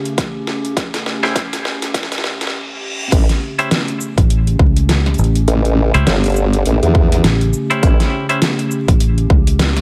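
A dry, close-up mix with a haze of vinyl crackle frames this swaggering, funky glitch hop cut, taken from a longer piece and moving at 102 BPM with a 16th-note swing. A warbling, lo-fi pad of detuned square and triangle tones holds sustained chords throughout, its nostalgic glow colored by chorus, built-in reverb and sidechain pumping, while an overdriven dubstep kit with a deep snare and metallic hats joins a punchy, up-front electronic kick. During the opening build-up over A7, a drum fill and filter sweep carry the tension, a twangy, bright clean electric guitar enters at 1.2 seconds with picked stabs treated with tremolo, delay and pumping, and a brief reverse cymbal leads into the drop. At 3.1 seconds the harmony shifts to A7#9 and a saturated formant-sweep wobble bass of pulse and sine tones takes over the low end with chorus. A round, foam-muted fingered electric bass joins at 4.2 seconds, adding a dark, tube-saturated weight alongside the wobble and the guitar stabs.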